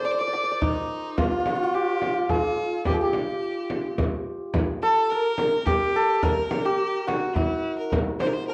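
A straight three-beat pulse carries this melancholic, hypnotic Persian modal ensemble piece, cut from a longer work. The up-front hammered santur leads with a shimmering, ringing melody, while a single bowed violin, clear and biting with light vibrato, traces an intense second line in the same register. A close, dry tombak played with soft hands and a deep, distant frame drum struck with hard hands join by 0.6 s, and the music moves into a new passage at 4.5 s, all heard through moderate studio reverb and the worn, warbling pitch drift of old cassette tape.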